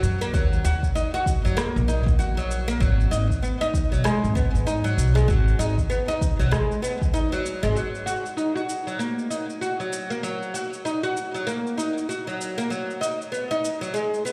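This meditative, hypnotic stretch of organic downtempo opens with a plectrum-plucked oud playing arpeggios, its bright, doubled strings sitting up front, softened by a low-pass filter and trailed by digital delay. Beneath it, a pizzicato upright bass with a woody tone pulses under sidechain pumping, while an electronic cabasa and rim click tick away quietly in the background, swung at 97 BPM in 4/4. A deep, tape-warm electronic kick drum joins at 0.3 seconds and drops out around 7.1 seconds, with the bass following at about 7.7 seconds, leaving the oud and the light percussion to carry the second half. The harmony rocks between D#m and G#m7, returning to D#m as the new section begins at 7.8 seconds. The whole mix carries light reverb and the sound of a big system playing in a bare room, and the recording is cut from a longer piece.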